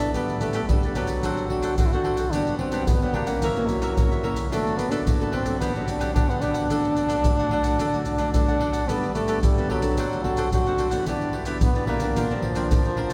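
Samba and choro in G major at 110 BPM, this joyful, playful fragment of a longer piece features a muted French horn singing the melody up front in a nasal, brilliant classical style with light vibrato, over crisp picked cavaquinho and small, fingerpicked nylon-string guitar. Maracas, a deep surdo and pandeiro played with soft hands sit close alongside the horn, joining at 0.1 seconds. A cathedral reverb with a 6.1-second tail fills the church-like space, while the harmony moves from Gadd9 through Gmaj7 and F#7 before landing on Bbadd9 at 12.2 seconds.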